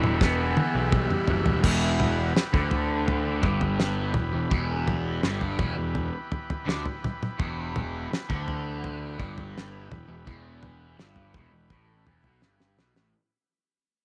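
Light reverb and a small-room ambience frame this dark, mysterious psychedelic rock fragment, cut from a longer piece. A shimmering, buzzing sitar is barely audible in the opening moment over a vintage combo organ holding sustained chords with light vibrato in the background, while a bright, double-tracked fuzz guitar with phaser drives a riff up front beside a punchy, overdriven picked bass. A damped 70s drum kit with fat snare and tight kick opens with a fill, the recording fades out from 1.6 seconds, and a last drum fill arrives at 12.4 seconds.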